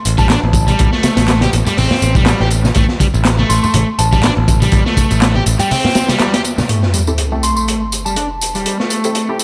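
Raw and gritty, this breakbeat excerpt in A minor swings at 122 BPM in an echo-heavy small room, with a crunchy, dark, up-front drum kit, electronic tambourine and handclaps, a bright, punchy picked bass that stops at 5.5 seconds, a soft FM synth bell with telephone-like colour, an overdriven picked guitar riff, close dry congas in the background, a sub drop impact at 6.7 seconds, and a muted, detuned dub chord stab with 12-bit grit entering at 7.1 seconds as the harmony moves from A7(no3) to Am7.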